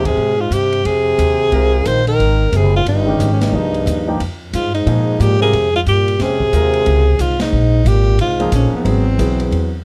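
Intense and spiritual, this short excerpt of modal jazz in F minor swings at a brisk 180 BPM in 4/4, cut from a longer piece. A clear alto saxophone carries the melody up front with vibrato and a subtone edge, while a breathy, whispered trombone plays a soft-attacked second line beneath it in an intimate, mellow voice. A grand piano supplies natural-sounding accompaniment, and a woody pizzicato upright bass with steel strings sits prominently, anchoring the harmony as it moves from Fm9 to Bbm9 and on to an altered Ab7. The acoustic drum kit, heard on hi-hat, kick, ride and snare, stays far back with dark cymbals, a boomy kick, a medium-tuned snare and a rolled-off top. The full band hits accents at 0.0, 3.4 and 7.4 seconds, and the close, detailed miking with little reverb keeps the small group sounding immediate.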